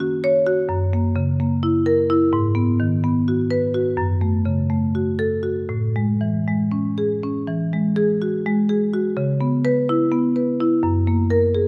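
Contemporary classical for solo marimba, this reflective, hypnotic passage from a longer piece moves in a rubato 7/8 at 251 BPM counted in eighths, its woody, up-front rosewood tone struck with medium mallets across a span from F#2 to C#5, drifting through chords such as D#m7, Amaj7 and Eadd9 before a restated opening idea at 7.5 seconds, all captured by close, detailed microphones in light reverb.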